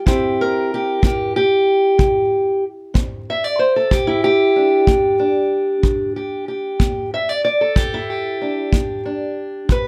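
A fingerpicked steel-string acoustic guitar opens this laid-back, swaggering slice of acoustic country blues, carrying the melody from 0.0 seconds across a range from G2 to E5. Its parlour tone is dark and boxy, and it sits up front in the mix. A kick drum joins at 0.1 seconds, tight and polished with an airy studio-room quality and a touch of brushes, also placed up front. The pulse is an unhurried 62 beats per minute, counted in dotted quarters within a 12/8 metre, with a straight feel in G major. The harmony rests on C7 before settling onto G at 3.9 seconds. A moderate booth ambience gives the duo an intimate, close setting, and this short passage is cut from a longer piece.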